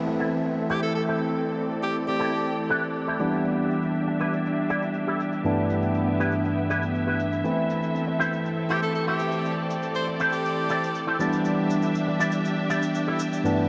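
A barky tine electric piano sits up front, played clean through a combo amp with a low-pass filter and analog delay, carrying the accompaniment through this sleek, cosmic nu-disco excerpt at 120 BPM in A minor. A rich symphonic string section holds smooth, bowed chords with light vibrato from a distant place in the mix. Meanwhile an electric guitar with an envelope filter plays a dark, compressed, fingered riff colored by ensemble chorus and delay. A dry acoustic shaker ticks in the background, and a filter sweep runs across the drums, guitar, electric piano and strings for the whole passage. A bright, close-miked tenor saxophone steps in for brief pop-style solo phrases with vibrato, first at 0.7 seconds and again at 8.7 seconds, over a progression moving from Am through Em7 and G6 and back, all bathed in a huge, dreamy reverb.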